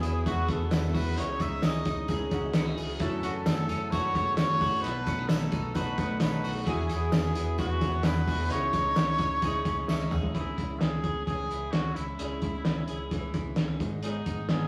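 A bright, up-front trumpet carries the melody with vibrato and scooped notes in this restless, bittersweet stretch of jangly indie pop in C# minor at 131 BPM, cut from a longer piece. It rides over a cloth-damped, thuddy drum kit with a fat snare and a gritty, rolled-off top, a dark, foam-muted fingered bass, clean electric guitar arpeggios, and a shimmering, octave-doubled twelve-string acoustic sitting very quiet in the mix. Glossy chorused retro synth keys and a jingly tambourine hang in the background until about 10.4 s, when a drum fill shifts the song into a new section over C#m and G#m chords, all inside a rough rehearsal-room sound with stone-room reverb and saturation.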